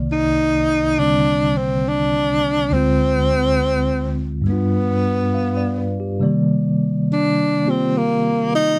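Smoky and melancholic, this slow swung jazz ballad in C minor at 69 BPM sets a breathy, whispered tenor saxophone up front with soft attacks and vibrato over a clean, warm tine electric piano with medium tremolo through a combo amp, moving from Cm9 through Dm7b5 and G7 back to Cm9, with the saxophone taking an intimate solo from 6.2 seconds, all captured by close, detailed microphones in light reverb.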